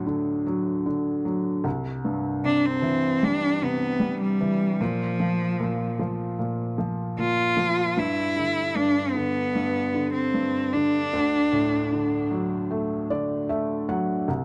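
Emotional and heartfelt, this excerpt of a pop ballad rests on a felt-muted upright piano, soft and intimate with its action noise audible, which accompanies throughout across a span from C2 to F#5. A clear, focused bowed cello with vibrato carries the melody up front from 2.5 to 12.3 seconds, and then the piano plays a fill starting at 12.7 seconds. The dry, close sound of a 1970s-style studio frames chords moving through D, C, Bb5 and G before returning to D.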